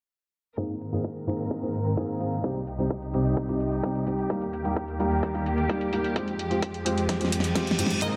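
A soft, felt-muted upright piano with tape echo carries the accompaniment in this anthemic, emotional festival progressive house excerpt at 129 BPM, pumping alongside lush bowed symphonic strings over an Abadd9, Cm, Eb and Fmadd9 progression, while a filter sweep runs across the strings and the drums: a punchy background electronic kick and an up-front overdriven pop kit with a fat snare and metallic hats, then a reverse cymbal and riser enter at 7.4 s before a crystalline wavetable pluck with chorus and a huge, thick detuned supersaw riff arrive at 8.0 s, all bathed in a dreamy hall reverb.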